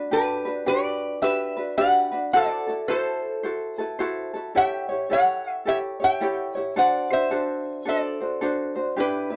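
Dreamy and sunny, this short Hawaiian passage is cut from a longer piece and moves with a gentle swing in four. A fingerpicked acoustic ukulele opens at 0.0 seconds with light accompaniment, sitting up front in the mix. A metal-body resonator slide guitar enters at 0.1 seconds to carry the melody, its metallic, nasal slide tone played with fingerpicks, also up front and slightly louder than the ukulele. The harmony moves from Gmaj7 through F#m7b5 and A7 to D7. A moderate booth ambience surrounds both instruments until they stop together at 9.4 seconds.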